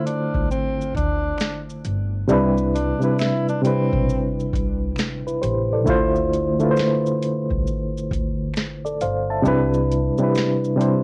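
A breathy tenor saxophone with plate reverb opens over a reedy, lightly overdriven electric piano with fast tremolo and cassette tape coloring; the saxophone stops at 4.3 seconds, leaving the piano, a booming analog drum machine with deep kick, crisp snare and metallic hats, a woody pizzicato upright bass and very quiet finger snaps to carry this hazy, melancholic lo-fi hip hop excerpt at 67 BPM in D dorian, swinging between Dm9 and Cmaj9 in a small room on a home cassette recording.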